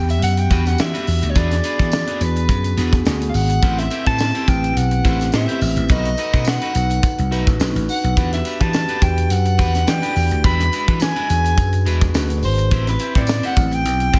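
A mellow soprano saxophone opens this slick, urban excerpt of polished 1980s jazz-funk pop, carrying a distant, roomy jazz-style solo line over a tine electric piano softened by lush chorus and slapback echo, while a vintage slap bass sits up front with a growly, punchy, amped tone. From 0.1 seconds a tight funk drum kit joins, with a high-tuned snare, tight kick and hi-hat that sound natural in a small room, alongside a very quiet, jingly tambourine. An electric guitar at the edge of break-up adds a twangy, picked riff, its slightly broken-up tone touched by subtle chorus and slapback echo. The harmony cycles through Em9, E7, Am7 and B7 in a relaxed swung sixteenth-note groove. Light studio reverb gives the whole mix a smooth, glossy sheen as the passage runs to 14.2 seconds.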